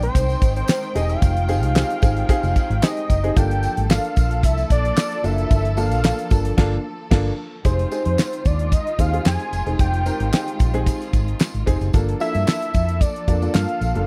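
A fat, detuned sawtooth lead carries the melody in this slick, funky early-eighties boogie funk clip, its sub-octave weight and ring-modulated edge thickened by chorus and a slapback echo. Up front, a dry acoustic kit drives the straight groove with a fat snare, tight kick, hi-hat, handclaps and crash, while a round, foam-muted fingered electric bass sits just as forward with a dark, amped tone. A mellow baby grand piano adds intimate accompaniment, its short sustain and audible action noise giving it a natural feel, and a lush bowed string section holds smooth, vibrato-rich chords beneath. A bright, jingly tambourine sounds distant in the background, as if in a larger room. The harmony moves between Fm9 and Gm9, and the band hits an accent from 6.6 to 7.7 seconds before the next section begins, all captured in a close, dry 1970s-style studio sound.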